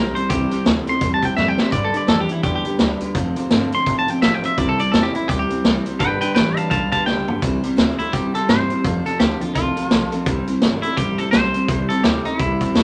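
A twangy, clean electric guitar carries the melody up front in this retro, rowdy rockabilly excerpt, set in C major at 169 BPM in 4/4 with a 60% swing on the eighths. Beneath it, a second electric guitar played through a small old amp picks out a low, slightly broken-up riff, while a bright, full-bodied steel-string acoustic guitar plays its picked accompaniment from the background. A woody, thumpy pizzicato upright bass anchors the bottom, and a vintage drum kit enters at 0.2 seconds with hi-hat, tight kick, medium-tuned snare and toms, its sound saturated and gritty with a rolled-off top and placed up front. Drum fills at 1.4 and 7.1 seconds lead into the chord changes and into the repeat of the same section, with the harmony moving among C, G and F. A wet club reverb gives the whole band a lively, small-room bounce.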